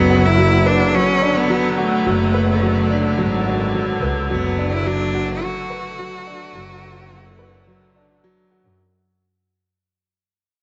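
A clear, smooth, even solo cello carries the melody up front with vibrato, singing between A3 and F#4 before it stops at 8.2 seconds. This short excerpt of hypnotic, intimate piano and strings electronica moves at 107 BPM in a straight 4/4, resting on a Bm/F# chord. Beneath it, a woody, natural upright piano repeats a riff, while a dark studio double bass section bows the low line with a nasal, reedy gut-string tone in a period style, sitting forward in the mix. A bright, intense string quartet, one player per line, holds sustained chords from a distant chamber position until 8.7 seconds. The whole passage is a drop that also fades out, with moderate scoring-stage reverb and small room ambience, and a top end that stops around 7.9 kHz.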